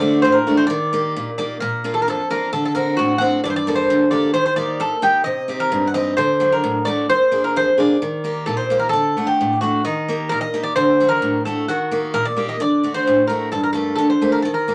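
In a straight 2/4 feel, this intense, driving Greek folk passage places a metallic, double-strung bouzouki melody, with some strings doubled at the octave, up front beside a picked steel-string acoustic guitar accompaniment of concert tone, both playing throughout in a wet studio reverb as the harmony rocks between D and Eb chords and closes on Gmadd9.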